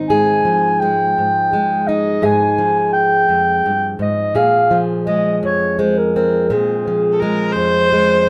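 A dark, softly attacked clarinet carries the melody up front in a classical style, its tone distant and roomy, over a fingerpicked plugged-in steel-string acoustic guitar that plays a warm concert-style accompaniment from the start. This short cut from a hopeful, nostalgic acoustic folk-pop ballad in 6/8 moves from Fm9/Ab to Bbsus2 under light reverb, with lossy compression artefacts. At 7.1 seconds a single bowed viola joins with a clear, smooth, even second line, close and touched with vibrato.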